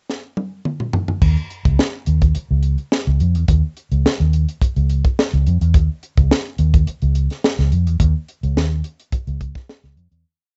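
Funk with a strutting, playful mood, this short piece opens with a tight, dry acoustic drum kit rolling through a fill across the pickup bar before settling into a crisp sixteenth-note groove of kick, snare, hi-hat, toms and crash cymbal. The snare is tuned high, the kick is tight and compact, and the cymbals ring bright up front. At 1.2 seconds a vintage electric bass joins for the breakdown, its fingered, foam-muted tone dark and round as it works a syncopated riff anchored on the downbeat, dotted with muted ghost notes and chromatic approach notes in a low, narrow register. Both parts sit close and forward in a rough home-demo mix with little reverb, carrying the dulled, tape-worn character of a cassette. The track fades out from 8.0 seconds to its close at 10.2 seconds.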